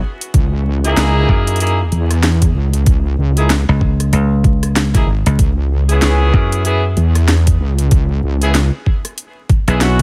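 Glitch hop at 95 BPM in 4/4 with a swung 16th-note feel, this gritty, funky excerpt sits in C# dorian, moving from F#13/C# to C#m7 at 5.4 seconds. A layered electronic kit opens at 0.2 seconds, its cracking snare, rim click and bright hats overdriven and carrying a small-room character, and an electronic kick drum, sampler-style and pitched down, thumps up front with overdrive from 0.3 seconds. A heavy, detuned wobble bass built from sawtooth and sine tones sits up front with chorus and tube saturation, sustaining in a low register until 8.7 seconds. Alongside it, a dry thumbed slap bass enters at 1.3 seconds, electric, foam-muted and punchy. A vintage, jazz-style horn section with light vibrato plays tight stabs colored by sidechain pumping and tape echo. The mix is close and dry, with a layer of vinyl crackle running beneath.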